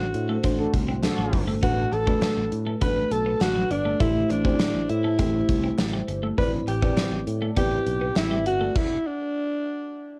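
Nostalgic and moody, this 1980s-style pop fragment moves at 101 BPM in a straight 4/4, tuned slightly low and cut from a longer piece. A raspy, gritty alto saxophone carries the melody up front, while a glassy synth bell traces a second line in the background through chorus and analog delay. A lush, dreamy FM electric piano with a soft pad layer supplies the harmony over a round, dark fretless bass. A bright, twangy twelve-string electric guitar plays a compressed riff behind them, and the gated drum kit, with its polished stone-room snap and bright cymbals, drives the groove beside a very quiet group handclap. The band opens on an accent, where a brassy synth stab sounds from 0.6 to 1.4 seconds, and the harmony drifts through chords such as D7/A, Am7 and Cmaj9/A before a stop at 8.8 seconds leaves the saxophone alone until 10.2 seconds. The whole mix carries the hazy color of a cassette home recording in a small room.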